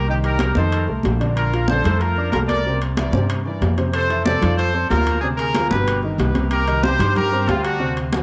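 Passionate and danceable, this short salsa excerpt moves at a brisk 186 BPM in a straight 4/4. A bright, punchy trumpet section carries the melody up front, its sound colored by cassette tape and a tape echo. Beneath it, a dark, mellow baby grand piano supplies the accompaniment, also with a cassette tinge, while a woody, thumpy upright bass, played pizzicato on steel strings, holds the low end close to the listener. Congas with a thin, high-tuned skin sit distant in the background, and ringing metal-shell timbales enter at 0.2 seconds. The harmony moves from Cm7 through F7, Bbmaj9, C, Fmaj7, Dm7b5 and Gaug before returning to Cm7, all set in a moderate spring reverb and small room ambience that give it a homespun cassette feel.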